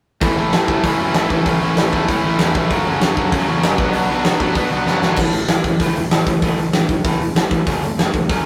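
The big rock drum kit powers this upbeat, energetic punk rock excerpt at 193 BPM in A major, its punchy kick, fat snare, bright cymbals and natural big-room sound sitting up front. An overdriven electric guitar plays a bright, picked riff throughout, while a tight distorted guitar adds its own bright, picked riff until 5.2 seconds. Underneath, a fuzz picked electric bass adds a growly, overdriven line from the background. The chords move from A to F#m and Bm, and a drum fill from 4.9 seconds leads into a second section built on A5 and F#m. The rough rehearsal-room recording carries light reverb and warm saturation, cut from a longer piece.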